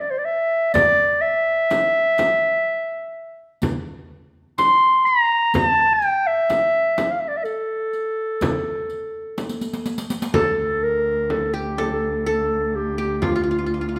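A dark, smooth-topped clarinet opens this soulful, longing Turkish makam piece, singing up front in a classical solo style in A makam kurdi. The 10/8 metre moves at 125 BPM in eighths with a straight feel, carried by a deep frame drum and the close jingles of a riq. The frame drum plays a fill from 9.4 seconds. At 10.3 seconds the music shifts to D makam nihavent: a bright-edged qanun joins up front with a fingerpicked second line, and a veiled, muted cello holds a bowed drone on D2 with vibrato and portamento. The whole ensemble sits in a moderate recital hall reverb, and this fragment is cut from a longer piece.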